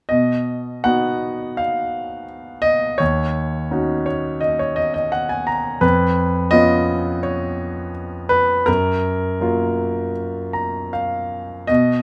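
A rubato 4/4 pulse flows freely through this short passage of lyrical classical solo piano, tender and peaceful in mood. A clear grand piano, close and intimate with its action noise audible, moves through B, D#m7, C#7/E# and F#maj7 across a span from D#2 to A#5, adding brief fills at 3.7 and 10.2 seconds. Moderate studio reverb surrounds the up-front, natural sound, and the passage is cut from a longer piece.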